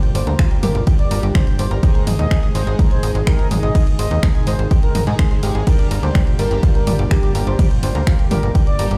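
This melodic techno excerpt runs at 125 BPM in a straight 4/4, set in G phrygian with a dramatic, driving mood as the harmony moves from Gm7 to Ab and back to Gm7 at 5.7 seconds. A punchy analog kick enters at 0.4 seconds, sitting up front with a small-room character. A layered house kit of finger snaps, hi-hat, ride cymbal and toms carries the groove. Equally forward is a tight, nasal sequencer bass built from sawtooth and square waves, its filter plucks decaying quickly through tube saturation and sidechain pumping. An expressive synth lead carries the melody, smooth and dark with vibrato, a moving notch, chorus, delay and pumping. Behind it, a round analog pluck plays arpeggios with a noise layer and filter sweep, while an edgy sync-sweep polysynth adds full-bodied stabs, both bright and tucked into the background with chorus, delay and pumping. Underneath everything sits a very quiet, warm, warbling pad of detuned vintage sawtooths holding slow-attack chords, and the mix stays fairly dry overall.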